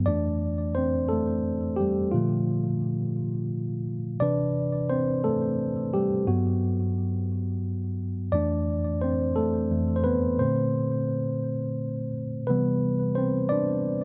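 Moving in a slow, straight 6/8 at 58 beats per minute counted in dotted quarters, this short R&B passage cut from a longer piece has an intimate, tender mood in C major. A tine electric piano plays alone for the full 14.0 seconds, ranging from F2 up to D5. Its tone is worn and slightly out of tune yet clean, heard through a combo amp and placed up front, with a delay trailing its notes. The harmony drifts through lush chords such as Fmaj9, Bbmaj7, Cmaj9 and Gmaj7, changing roughly every two seconds. At 12.5 seconds the music moves into a brief new section, arriving on Cmaj9 as the clip closes. A light reverb adds a gentle sense of space.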